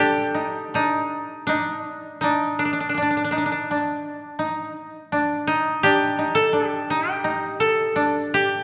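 Calm and austere, this Japanese traditional passage, cut from a longer piece, moves at a rubato 83 BPM in 4/4 as two fingerpicked koto play together for its full 8.6 seconds, one carrying the melody between D4 and A4 while the other holds a softer second line between D4 and Eb4, both woody, dry and up front yet set within a lingering concert-hall reverb, with a muted top end that reaches only 7.7 kHz.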